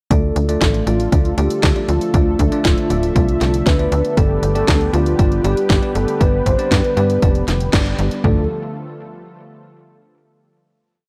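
A soft, octave-layered synth lead carries this bittersweet, melodramatic italo disco piece, its round, dark tone stacked with a sub octave and coloured by chorus, tremolo, vibrato and tape echo as it sings short hook phrases. Underneath, a tight, nasal sequencer bass drives steady eighth notes with a plucky, fast attack that decays. A house drum kit sets a punchy four-on-the-floor kick with floor toms, while its cracking snare and bright closed hats play a disco machine beat, both layers overdriven and set in a small room. A smooth, detuned analog pad holds sustained chords with chorus, and a bell-like tine electric piano, filtered and sitting in the background, adds dotted-rhythm chord stabs. The harmony moves from D minor to G, the band hits an accent at 7.7 seconds, and a final D minor chord rings from 8.2 to 10.3 seconds in this dry, close, 1970s-style studio sound.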